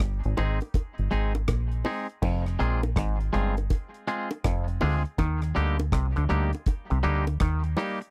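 Roots reggae at a laid-back 81 BPM with a sunny mood and swung sixteenths, built on a dark, round, foam-muted fingered bass and a dry, deep drum kit with a tight kick, rim clicks, hi-hat and crash, joined at 0.4 seconds by a clean, twangy picked guitar trailing dub echo and tight, high-tuned bongos, before a hollow, nasal auto-wah clav riff enters at 2.2 seconds as the chords move from Ab to Fm and Eb, all captured in a close, dry 1970s-style studio sound in this short cut from a longer piece.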